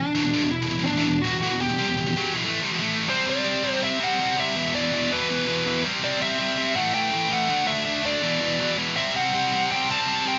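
Heavy and epic, this metal excerpt in E minor at 163 BPM opens with a dark, distorted lead guitar carrying the melody from 0.0 seconds, joined at 0.2 seconds by a bright, scooped, double-tracked high-gain rhythm guitar driving the riff up front, before the feel drops into half time at 3.1 seconds over chords moving from C5 through E5, A5 and D5, all captured as a band playing live in one room with light reverb and a rolled-off top end.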